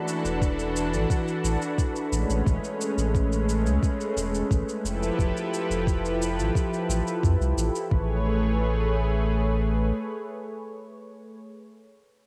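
A lush, thick unison pad with chorus sustains chords from E9sus4 through Amaj9 and Fmaj9#11 over a round, deep sine sub bass with tube saturation, a soft, tape-colored electronic kick drum and a cabasa, while a breathy, wind-like tuned noise texture sits dark in the background until 7.9 s in this relaxed, sunny sunset chillout excerpt at 88 BPM in A major, its home cassette sound carrying light digital ambience.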